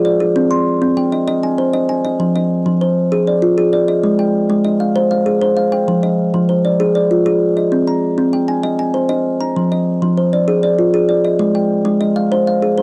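A home cassette recording gives this short cut from a longer piece a tape-colored sound, with a light touch of room reverb around a close-miked, up-front instrument. It is a southern African traditional piece for solo kalimba, played in F dorian at 130 beats per minute counted in dotted quarters, in a straight 12/8 feel, with the tuning set to A4 = 443 Hz. The kalimba, a solid-board instrument sounded by thumb plucks, has a woody, ringing voice that still comes across dry and full, covering a span from F3 to C6. The mood is trance-like and hypnotic as the same section repeats, first briefly and then again from 2.2 seconds through to the close at 12.8 seconds. The harmony circles through Cm, Fm and Ab, returning to Fm at 9.6 seconds before settling on Ab once more.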